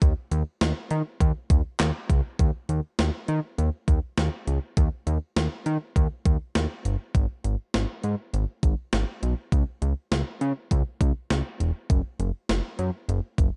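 A straight 4/4 groove at 101 BPM drives this cool synth-pop excerpt, cut from a longer piece, built on a clean 12-bit digital drum machine whose overdriven, sampler-style kit of thumpy kick, medium-tuned snare, hi-hat and handclaps sits up front throughout the 13.5 seconds. Beside it, a fat analog bass ranging from E1 to D#3 blends detuned sawtooth, square and triangle tones with ring modulation and a filter sweep, its fast attack and sustained notes giving a thick, driving low end. The production is dark and warm in a digital ambience, moving into new sections at 2.4 and 7.1 seconds.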